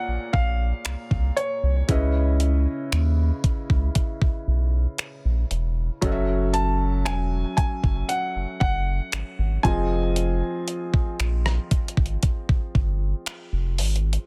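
A slow, straight 4/4 pulse at 58 BPM opens this moody, late-night contemporary R&B piece, cut from a longer track and tuned to A4 = 441 Hz. A detuned 8-bit digital drum machine sits up front with a thumpy kick, hi-hat, rim clicks and finger snaps, its sampler-style sound tape-tinged and re-recorded in a small room, with soft clipping on the snare. Beneath it, a round analog bass carries deep, dark, sustained notes with a fast attack and a slightly nasal, sine-like tone, also placed up front. A felt-muted upright piano supplies intimate, mellow accompaniment with audible action noise throughout, while a natural-sounding baby grand piano plays the melody from the start until 11.2 seconds. The harmony moves through Bbm9, Dbm9, Gbm9 and Fm7, with little reverb keeping the sound dry, and the master is dense and heavily limited in a modern style.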